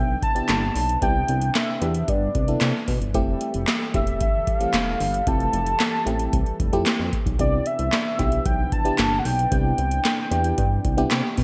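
Feel-good and smooth, this brief early-eighties boogie funk excerpt rides a velvety, detuned synth lead with vibrato that carries the melody over a dark, glossy chorused synth bass and a shimmering pulse-width pad sitting mellow in the background. A booming, overdriven analog drum machine sits up front with a deep kick, crisp snare, metallic hi-hats and handclaps wrapped in gated reverb, entering at 0.2 seconds, while a warbling FM electric piano with tremolo and phaser adds accompaniment from 0.4 seconds. The bright digital production moves from Cmaj9 to Fmaj9 and back under light reverb.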